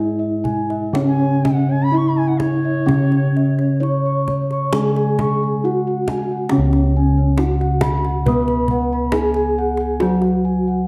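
A slow, straight 4/4 pulse of 59-68 BPM carries this serene, shimmering excerpt of Javanese gamelan in C# slendro, which moves into a new section at 6.5 seconds. Three bronze metallophones ring together in layers: a melody in the middle register, a lower accompaniment, and quiet high arpeggios touched by a slapback echo. One is struck with padded disc mallets for a mellow, soft tone whose paired tuning produces shimmering beats, another is played with a wooden mallet, and a third sounds boxy, as if in a small room. Round, beating bossed gongs hold the bass, while a tight, close and dry kendang is struck with hard hands. From 1.1 to 3.8 seconds a distant, bright, reedy bansuri adds a pure, tongued second line with vibrato. The whole sits in a moderate recital-hall reverb with a dark production and a faint mains hum beneath.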